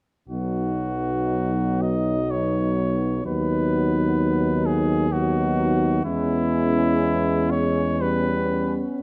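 From 0.3 s a brass band opens together in a lyrical, tender classical hymn in a rubato three-four, with a punchy, smooth-topped cornet carrying the melody up front over a background French horn section with light vibrato, a soft-attacked euphonium and a mellow trombone, while a warm tuba anchors the bass up front and the chords move from B to C#m7b5/E by 8.0 s, all captured in a close, detailed recording with a touch of reverb before the excerpt ends at 9.0 s.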